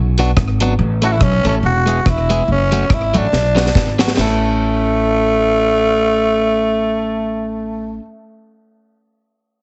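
Through a heavily compressed, radio-like sound with moderate plate reverb, this cheerful, joyful swung ska fragment sets woody, thumpy pizzicato upright bass and a clean, scooped picked electric guitar under a deep reggae drum kit with a high-tuned snare and tight kick, which plays a fill before stopping at 4.3 seconds, while a raspy, growling tenor saxophone with light vibrato and slapback echo carries the melody up front from 1.0 seconds.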